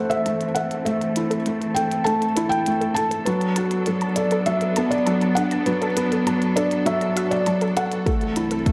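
Set in a moderate, lush hall with studio ambience, this short cut of moving, hypnotic piano-and-strings electronica at 100 BPM builds steadily over an Am to D6 progression. Two felt-muted upright pianos, dark and intimate with audible action noise and digital delay, carry a melody and a riff, the melody sitting up front. Beneath them sit a rich, bowed symphonic string section with vibrato, whose chords move through a filter sweep, a very quiet, warbling lo-fi pluck playing detuned sawtooth arpeggios with chorus, and clicky high-passed electronic hats, until a deep, overdriven kick drops in at 8.1 s.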